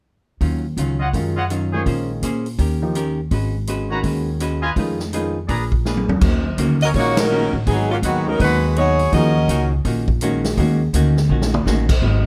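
A swinging 4/4 big-band groove drives this dramatic jazz fragment, with a roomy drum kit's boomy kick and fills, woody pizzicato upright bass, clean hollow-body archtop guitar and smooth vintage grand piano comping beneath clear, softly attacked trumpet stabs from 1.0 to 5.6 s, before an up-front saxophone section with vibrato takes the melody at 6.8 s, punctuated by a band accent at 7.1 s, in a light reverb.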